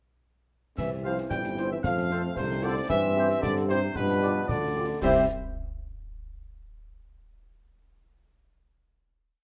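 A clear trumpet section carries the melody of this rousing, spirited military-style march for wind band, a complete piece in C major at 113 BPM in a straight 2/4. Beneath it, a distant, roomy euphonium doubles the tune at the octave, while a bright trombone section holds sustained chords in the background and a mellow tuba lays down smooth-topped bass on the beats. From 1.0 seconds a warm woodwind section and a very quiet, soft-attacked French horn section fill in after-beat and sustained chords, all the winds playing in a classical style with light vibrato. The close, dry percussion sets a marching snare over a bass drum on the beat, joined by dark clash cymbals. The short harmonic journey moves from C through F and C/G to G7 before settling on a final C chord at 5.0 seconds, all heard in a wet large-studio reverb with a faint mains hum underneath.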